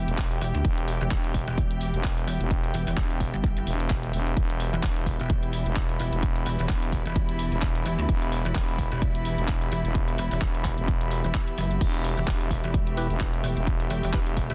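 A pulsing, saturated wobble bass and a growling FM bass sit up front, driving this aggressive, swaggering bass house cut from a longer piece, with a punchy electronic kick and a house kit of claps, hi-hat and crash cymbal beneath a dense, heavily limited master over a swung groove. Behind them, veiled con sordino strings carry 12-bit sampler grit and a low-pass filter, an airy, breathy pad adds detuned shimmer, and a grainy egg shaker ticks in the background. A hollow, delayed organ stab surfaces only at 13.0 seconds near the close.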